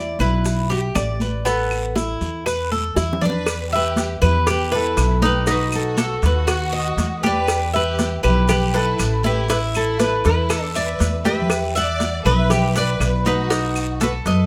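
A dark, thumpy upright bass sits up front, its plucked gut strings giving a woody pulse to this danceable, sultry passage of Cuban son and guajira, cut from a longer piece. Beside it, the Cuban tres plays metallic, picked arpeggios on double strings, some doubled at the octave. A bright, fingerpicked classical nylon-string guitar carries the melody. In the background sit woody claves, thin-skinned high congas played with soft hands, tight bongos and cowbell, a raspy guiro and grainy maracas, with a percussion fill around 2.7 seconds and another at 11.2 seconds. A lush, bowed symphonic violin section enters at 3.2 seconds with a soft-attacked, expressive second line full of vibrato, and the whole is captured with close, detailed microphones and light reverb.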